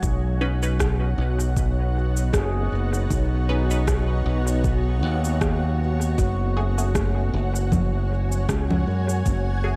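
Ambient dub at 78 BPM in 4/4 with a gentle 16th-note swing, this spacious, meditative excerpt moves from Badd9 to F#madd9 at 6.2 seconds. A blurred, detuned granular cloud pad holds sustained chords with slow attacks and long releases, bathed in its own reverb, while a very quiet handpan of nitrided steel plays soft, ringing arpeggios, close-miked and dry. Up front, a bright, punchy fingered electric bass anchors the low end, joined by a deep, tape-warm electronic kick. Overdriven electronic cabasa, rim click and congas, re-recorded in a large room, carry a dub echo, and both drum parts stop at 9.4 seconds. From 0.4 seconds a filtered dub chord stab adds short, detuned sawtooth-and-square plucks treated with phaser and dub echo, all set in a light overall reverb.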